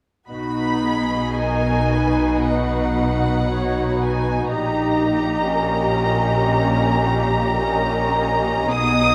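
A slow, romantic classical movement for string orchestra in B major, tender and lyrical, moving with rubato at around 52-59 BPM in 4/4, heard as a short fragment from a longer piece. Muted violins carry the veiled melody up front, with a second violin section beneath, a lush, distant viola accompaniment, and cellos and double basses holding the bass, all bowed con sordino with vibrato. The strings sit in a reverberant scoring-stage space as the harmony moves from B to a D#7 over A# at 4.5 seconds.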